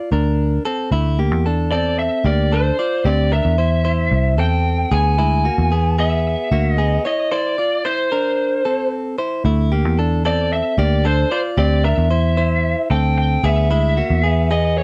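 A dark, lo-fi lead guitar through a small cranked amp sings an overdriven melody with slapback echo from 1.7 seconds, over bright, twangy clean electric guitar arpeggios and a round, foam-muted picked bass in this wistful, bittersweet jangly indie pop excerpt, captured dry and close like a 1970s studio recording, with a break at 7.3 seconds landing on Am before the chords over D return.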